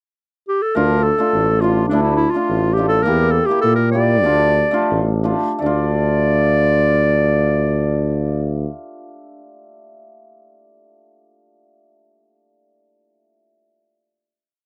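Festive yet bittersweet, this short klezmer piece in D minor moves in a straight 2/4 at 79-104 BPM, opening with a brief pickup in which the clarinet enters. Up front in a classical style, the clarinet carries an ornamented modal melody over a hammered dulcimer's shimmering, ringing syncopated triads and a tuba's smooth-topped quarter-note bass with light vibrato. The harmony moves from Dm to Edim and back, the tempo slows from 3.1 to 5.6 seconds, and the piece settles onto a final chord, with the dulcimer ringing on alone until 10.0 seconds. The sound is dry and close, like a 1970s studio, with a touch of light reverb.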